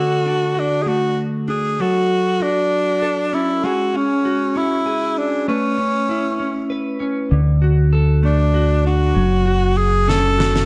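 A six-eight pop ballad in a melancholic, dramatic mood, cut from a longer piece, with a dark production and light studio reverb. A clear, close-miked tenor saxophone carries the melody from the start, singing with vibrato in a pop style and a slapback echo trailing each phrase. Beneath it, a double-tracked clean electric guitar, recorded direct, picked and compressed, supplies the accompaniment with a warm, up-front tone through a chord progression that moves from D to F#m, C#sus4/G# and Aadd9. At 7.3 seconds the second section begins and a fingered electric bass enters, round and punchy, sitting up front in the low register. At 10.1 seconds a fat, big-room acoustic snare drum plays a short fill.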